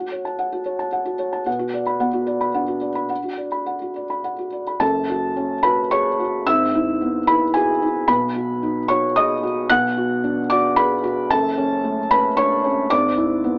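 In a rubato triple metre, this short passage cut from a longer neoclassical minimalist piece unfolds alone on a felt-muted upright piano, reflective and intimate. Its chords shift from minor toward major colours from about 6.4 seconds, peaking on B major near 8.1 seconds, before settling back. The piano sits up front with a dark, mellow, thick-felt tone and audible action noise, spanning from deep bass to high treble. Light reverb and a narrow AM-radio colouring give the whole recording a faded, private quality.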